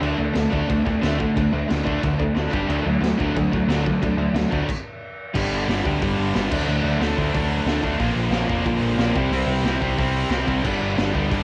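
A straight 4/4 punk rock beat drives along at 181 BPM, pounded out on a raw garage drum kit with a punchy kick, medium-tuned snare, hi-hat and dark crash cymbal, all saturated and gritty with a rolled-off top and a pumping small-room sound. Three guitars play the riff together from start to finish: a tight, bright distorted guitar reaching G4, a compressed distorted electric guitar set in the background, and a crunchy overdriven guitar, double-tracked and also sitting further back. Beneath them, a growling picked electric bass with overdrive gives a round, punchy low end down to F1. The opening section pushes through D5 and G5 power chords before the whole band halts in a brief stop from 4.7 to 5.3 seconds. It then crashes into a second section cycling through G, D, Bb and C, all in an upbeat, energetic mood. The sound is a dry, lo-fi home cassette recording with little reverb, cut from a longer piece.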